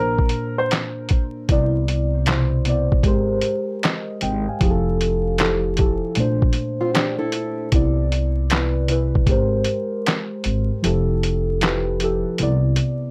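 Lo-fi hip hop at 77 BPM with a 16th-note swing, this dreamy, cosy fragment in C major drifts through lush ninth chords under a blanket of vinyl crackle and moderate studio ambience. A muffled, pitched-down sampler-style kit with a thumpy kick and compressed snare, hi-hat and handclaps sits up front beside woody pizzicato upright bass on gut strings and muted, felt-like synth keys coloured by chorus and phaser, while background finger snaps join at 2.3 seconds and the kick drops out from 10.8 seconds. A woody upright piano with tape echo opens with a brief melodic figure, and a dark, fingerpicked nylon-string guitar with audible finger squeak adds a short tape-echoed line at 6.8 seconds.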